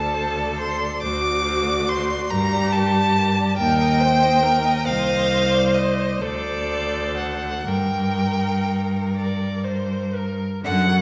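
A close, focused violin carries a high second line up front until 9.2 s, over a second violin in the background that sings the yearning melody with rich vibrato and portamento, a distant viola accompaniment and an intense, smooth-topped cello bass up front, in a solemn, rubato G minor string quartet movement at 38-48 BPM in 6/8, heard from further back in a reverberant recital hall.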